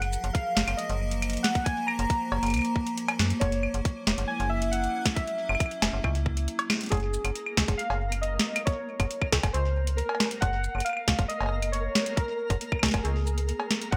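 Bright, 1980s-style digital production with moderate plate reverb frames this intricate, playful IDM excerpt in Gb lydian at 137 BPM. Warbling lo-fi synth keys carry a mellow, nostalgic melody over a metallic FM bass with tube saturation and a booming analog drum machine of crisp snare, metallic hats, claves, cowbell and shaker in gated reverb, joined by a tight electronic kick. An icy, crystalline glass pad pumps beneath until 6.9 seconds, just after a full-band accent at 6.7, and at 7.4 seconds a twinkling granular texture with an octave-up shimmer drifts in.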